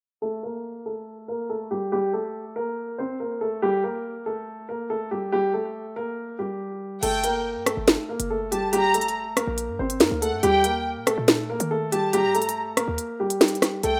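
Heard through a rough home-demo mix with a small, moderately reverberant room around it, this dark, menacing drill cut opens at 0.2 seconds with a mellow baby grand piano up front, carrying the melody under a low-pass filter that sweeps across the opening section. At 7.0 seconds the track moves into its second section, where an electronic drill kit arrives prominently in the mix with a sharp snare, crisp hi-hats, rim clicks and crash cymbal over a half-time feel. A short 808-style bass enters alongside it, punchy and tight, its sine tone edged with a noise layer, hitting with a fast attack before decaying. Above the piano, a lush symphonic violin section bows a high second line with vibrato and a focused, smooth top, its ensemble sound trailed by delay. The harmony rests on a minor chord with an added ninth before shifting to Eb, and the passage is cut from a longer piece.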